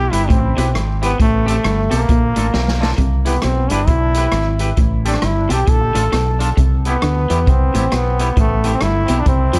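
Bouncy, upbeat ska at 134 BPM with a swung feel in C major, led by a brilliant, close-miked trombone melody with light vibrato and scooped notes, wrapped in dub echo and plate reverb, over a dark, round fingered electric bass, a twangy clean guitar with plate reverb, a slightly broken-up lo-fi guitar riff in the background, and a punchy vintage drum kit that plays a short fill at 2.5 seconds, all cycling through Cmaj7, Am7 and Bbmaj7 in this 9.6-second cut from a longer piece.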